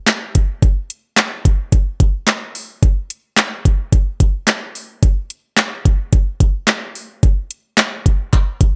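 An up-front electronic R&B drum kit, with a knocking kick, sharp snare, metallic hi-hats and handclaps, drives this summery, carefree pop excerpt at a straight 109 BPM in 4/4, while a crisp, human group handclap sits in the background in a small room, all set in a digital ambience.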